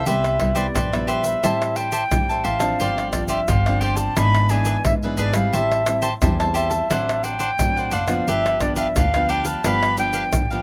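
Recorded outdoors with light reverb, this lively, festive samba and choro excerpt in C major moves at 88 BPM: a distant, airy silver concert flute carries the tongued, vibrato-laden melody over a crisp, bright picked cavaquinho, a full-bodied fingerpicked nylon-string guitar with old strings, and a woody pizzicato upright bass, while close, dry percussion of tube shaker, deep surdo, pandeiro and tamborim sits up front from 0.1 seconds.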